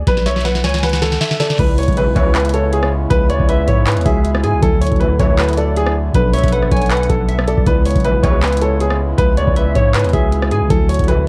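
An eerie, melancholic half-time trap excerpt where a booming analog drum machine with a deep kick, crisp snare and metallic hats opens with a fill, a long sine 808-style bass holds the low end while an up-front baby grand piano carries the melody, a glassy, detuned wavetable pluck with chorus and digital delay adds a second line, a very quiet reverse cymbal leads into the section at 1.6 seconds where a mellow tine electric piano with phaser and a softly vibrato French horn section sit in the background, an edgy sync-sweep polysynth drops short nasal stabs, and the whole mix wears the warbling pitch drift of worn cassette tape.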